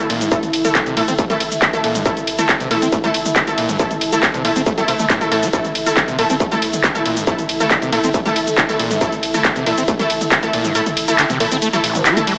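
This short cut from a longer piece has a small-speaker sound with light reverb and a digital ambience. It is driving peak-time techno at 138 BPM in a straight 4/4, hypnotic and dark, built on an A5 chord. A bright, aggressive rave stab of detuned unison sawtooth with a sine sub octave and a plucky filter snaps in with chorus, built-in reverb, dub echo and sidechain pumping, while a screaming acid line squelches with resonant filter sweeps, distortion, analog chorus and its own dub echo. Behind them a warbling, nostalgic lo-fi pad sits mellow in the background, phased and chorused, as a thick triangle sub bass holds a very quiet A1 underneath. Up front, a layered electronic kit of handclaps, warm hats, ride, shaker and toms pumps against the sidechain, joined by a distorted kick re-recorded in a large room. The kick drops out at 10.4 seconds, leaving the rest of the groove to run on to the end at 12.4 seconds.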